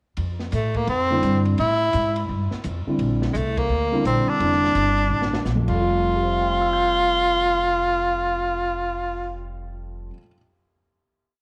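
Woody pizzicato walking bass and a dark, boomy small-room drum kit with a stick ride pattern open this brief, hypnotic and spiritual modal jazz piece at 170 BPM in a swung 4/4 in F major, as a bright, vibrato-laden tenor saxophone up front spins period-phrase motifs from 0.5 s, a mellow vintage grand piano with audible action noise adds syncopated quartal comping from 1.1 s, a band accent lands at 3.5 s, and a drum fill leads to the kit's exit just as the closing Fadd9 chord rings out under moderate spring reverb.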